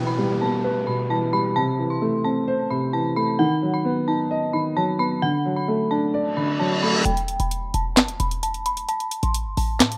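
Trap hip hop at 131 BPM in a half-time feel and E minor, melancholic and menacing, where an eerie, inharmonic detuned synth bell carries the melody through chorus, tremolo and digital delay over a boxy, mellow grand piano, while a downlifter sweeps through the opening seconds and a reverse cymbal leads into the 7.1 s drop, when the piano stops and a punchy, tight 808-style bass and a trap kit with sharp snare, bright hats and handclaps arrive as a filter sweep runs to the end, heard as a rough home demo mix with light reverb.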